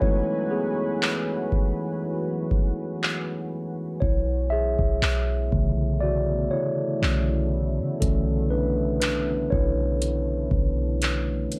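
This moody, longing contemporary R&B fragment opens on a mellow tine electric piano soloing up front over a deep, detuned ambient pad with chorus and a booming analog drum machine of deep kick, metallic hats and handclaps, before a clean, sine-like 808-style bass with a fast attack enters at 4.0 seconds, all captured in a dry, gritty hardware sound.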